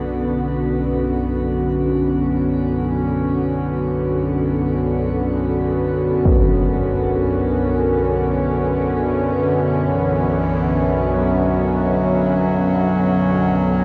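Floating in free time with a steady pulse nowhere in sight, this dark ambient drone feels unsettling and cavernous from its first moment. A low, detuned drone of sawtooth and sine sits up front throughout, its moving overtones resonant and its slow attack and long release smeared further by chorus and its own reverb. Above it, an evolving pad holds sustained chords, detuned and bright, with a filter swell, soft attack, chorus and shimmer reverb. A brilliant, open baby grand piano plays arpeggios across the whole passage, though it is barely audible beneath the haze. At 6.3 s a huge, dark impact lands, muffled by a low-pass filter, and from 9.3 s a solo bass clarinet with a smooth top enters up front in a classical style, its melody trailing shimmer reverb and tape echo. The whole production is dark and drenched in an immense ambient reverb, and the piece is cut from a longer work.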